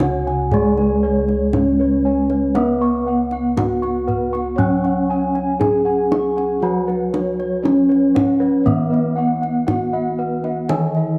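Ceremonial and shimmering, this slow Javanese gamelan passage in C# slendro moves at 59 BPM in a straight 4/4. Bronze metallophones carry the melody, accompaniment and a high arpeggio line: one is mellow and dark under padded disc mallets, while wooden-mallet instruments in paired tuning ring with shimmering beats, one of them close-miked, dry and full. Round, beating bossed gongs play a deep bass line and a tape-echoed arpeggio figure, and tight, soft-handed kendang sits in a small room, all within a moderate echo-chamber reverb of 1.6 seconds.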